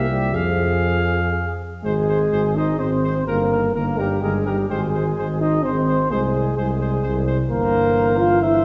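From the first moment, a grave, solemn classical brass quintet excerpt unfolds in a rubato three, with a bright trumpet melody and a distant flugelhorn second line floating over mellow, soft-attacked French horn and very quiet euphonium accompaniment, while an up-front, soft-attacked bass trombone carries the bass, the flugelhorn, horn, euphonium and trombone each shaded with light vibrato, and a reverberant scoring stage sets the ensemble further back in the room.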